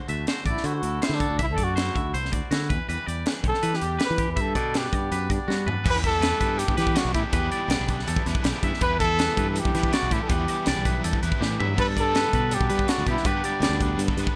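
A bright, clean, picked guitar and a warmer twangy guitar spinning tape-echoed arpeggios open this wistful, intricate math rock and midwest emo passage, cut from a longer piece and moving in a straight 4/4 at 162 BPM. A punchy, bright fingered bass and a crisp, airy, polished fusion kit with a high-tuned snare arrive almost at once, the drums sitting up front. From 0.5 seconds a breathy trumpet carries the melody, intimate and whispered with vibrato, scooped notes and a soft attack, its dark tone riding up front over chords that move from D9 through Em7 to Gmaj9. During a drum fill at 5.5 seconds, a double-tracked, overdriven guitar enters in the background with a crunchy riff shaded by tremolo, as the harmony settles on Em7 and later Gadd9 after a second fill. The mix is lightly reverberant and gently rounded at the top, giving the busy parts a soft, close-knit sheen.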